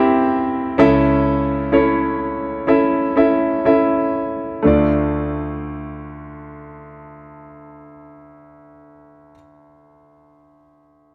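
In a straight, slow four that slows down over its first 4.6 seconds, this melancholic, longing pop excerpt features a clear, up-front concert grand piano with a deep bass and short-sustained vintage tone, moving from C through A/C# to Dm at 4.6 seconds within a moderate plate reverb.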